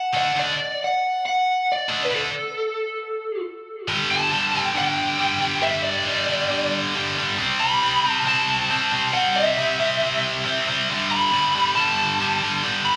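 A dark, overdriven lead guitar through a small cranked amp carries the melody with slapback and tape echo from the very start, joined at 0.1 seconds by a bright, double-tracked high-gain rhythm guitar grinding out a distorted riff, both picked and up front in a powerful, swaggering rock fragment captured live through a club PA with moderate room reverb.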